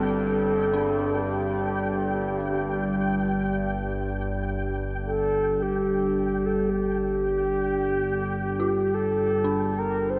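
Ominous and desolate, this dark ambient drone excerpt sets a round, horn-like synth lead with vibrato and diffuse delay up front over an evolving analog drone with phaser, a deep, very quiet detuned pad holding a Gsus2 chord, eerie inharmonic FM bell arpeggios warbling in the background, and a flickering granular texture, all bathed in a huge, wet reverb.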